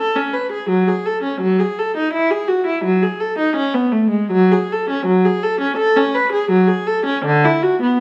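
A wet stone room lends this recording a reverberant glow, with the space itself heard from further back while the instrument sits up front. It is a short passage cut from a longer piece: a baroque-style suite movement for unaccompanied viola, flowing and radiant in mood. A single bowed viola carries the music alone from 0.0 to 8.0 seconds, moving in a free, rubato 4/4 between D3 and B4. Its gut-string, period-style tone has a reedy core and a smooth top, and the instrument is tuned slightly high, with A4 at 441 Hz. The result is intimate yet resonant, one player's line blooming into the surrounding stone.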